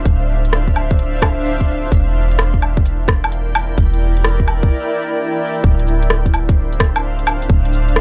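A blurred, granular pad and a soft, round 808-style bass open this melancholic, nocturnal future garage piece, both pumping against the sidechain from the first moment. The pad holds sustained chords with a slow attack and long release, its cloudy unison tone softened by its own reverb and roughened by vintage 12-bit sampler grit, while the deep, sine-like bass decays beneath it with a dark touch of tube saturation. A tight, up-front electronic kick and a tape-warm organic electronic kit of cabasa, smooth hi-hat, rim click and woodblock enter at 0.1 seconds, with a 67% swing on the 16ths at 129 BPM in 4/4. The harmony moves from Dm9 to Em7b5 in D minor, then a break at 4.7 seconds sets up the return of Dm9 as a new section begins at 5.6 seconds. The recording is dry and gritty, with a hardware character that keeps the drums and bass close, and it is cut from a longer piece.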